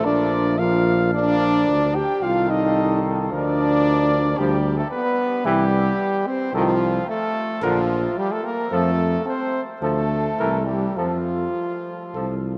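Noble and gently glowing, this brief classical brass quintet passage unfolds with a flexible, rubato feel, as if lifted from the middle of a longer piece. A dark trumpet carries the melody from the background, its smooth top and light vibrato sitting softly behind the group, while a warm flugelhorn sings a second line alongside it. The clear French horn stands up front with a soft attack and light vibrato, sharing the accompaniment with a bright but very quiet trombone that sounds distant and roomy. Underneath, a warm tuba anchors the bass with vibrato, placed up front yet carrying a distant, roomy quality. The whole ensemble plays together for about 12.6 seconds, drifting from Bb through diminished and dominant harmonies before settling on F, all bathed in a long, wet cathedral reverb that makes the space feel vast and echoing.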